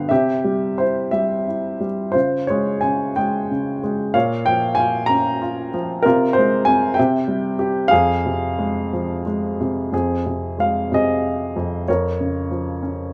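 A woody, up-front upright piano carries this reflective, wistful fragment of a lyrical classical solo in F minor, moving in a rubato 6/8 at roughly 58-67 beats per minute on the dotted quarter, drifting through C, Db, B-flat minor and F minor harmonies across a range from F2 to Bb5 in light reverb, with a new passage arriving at 9.9 seconds and a brief fill at 12.8 seconds before it breaks off.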